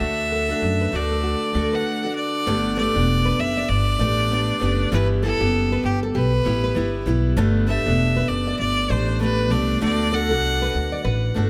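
Acoustic pop at 98 BPM in G major with a carefree, easy-going swing, where a biting, nasal bowed violin with vibrato and delay carries the melody up front over a full-bodied picked steel-string guitar and a woody, growly pizzicato upright bass, while a fingerpicked nylon-string guitar adds arpeggios in the background from 0.3 seconds, all in light reverb, with a break at 1.9 seconds before the chords move through Gadd9, Em and Gadd9 again before returning to D in this short cut from a longer piece.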